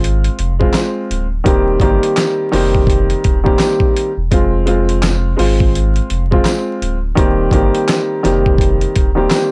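Gritty and reflective, this short boom-bap hip-hop excerpt moves at 84 BPM in 4/4 with a swung sixteenth-note feel. A dark, woody upright piano sits up front, its mellow, short-sustained chords filtered at both ends as they move between F minor and E-flat six. Underneath, a round sine sub bass adds deep, tube-saturated weight from the start until 9.3 seconds. The dusty, sampler-style drum kit carries a thumpy kick, a fat snare, handclaps and hi-hat, compressed and tape-warm at the front of the mix. From 0.7 seconds a bright, jingly tambourine rings distantly in a large room, tucked in the background. The overall sound is dry and gritty with a hardware edge, dusted with vinyl crackle.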